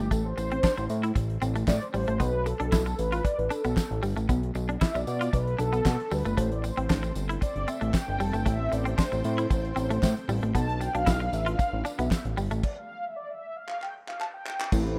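Danceable and late-night, this early-eighties boogie funk cut moves at 115 BPM in a straight 4/4, with a fat, detuned analog bass and a damped, dry 70s drum kit with a tight kick, fat snare, hi-hat, handclaps and crash sitting up front, while a jingly tambourine stays in the background. Mellow, brassy synth brass with chorus, vibrato and a filter sweep carries the accompaniment over Am7 and Bm7 chords, a bright, twangy clean electric guitar riff runs until 12.6 seconds, and a lush string machine ensemble enters at 6.4 seconds. An analog polysynth solo runs through the piece, which closes with a stop at 12.6 seconds and a drum fill at 13.7 seconds, all in a rough home-demo mix with light small-room reverb.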